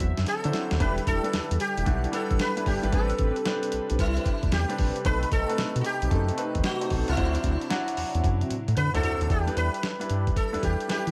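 A buzzing, plucked sitar carries the melody up front, its sympathetic strings adding a shimmering halo over a slick, punchy new jack swing groove in a swung 4/4. Beneath it, a dusty, sampler-style drum kit hits with a thumpy kick, a medium-tuned snare, hi-hat and toms, sounding compressed, gritty and tape-warm, with fills at 0.3 and again from 8.2 to 9.3 seconds. A round, deep analog bass anchors the low end, while a clear, polished baby grand piano supplies accompaniment through jazzy ninth, eleventh and altered chords. In the background, dark synth brass stabs with chorus, phaser and a filter sweep drop out at 10.3 seconds, and a lush, airy unison pad holds very quiet sustained chords until 9.3 seconds, when the passage moves into a new section. The sound is dry and close, and the clip is cut from a longer piece.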